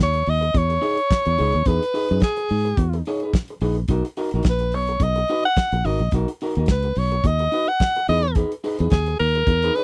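A lightly swung 108 BPM disco groove in 4/4 from a warm soul drum kit with a fat snare and tight kick, together with a round, foam-muted fingered bass, drives this danceable, glamorous clip: a slightly broken-up, compressed electric guitar accompanies over Emaj7 and Bmaj7 beneath a breathy, whispered alto saxophone melody with light vibrato, in a dry, close 1970s-style studio sound.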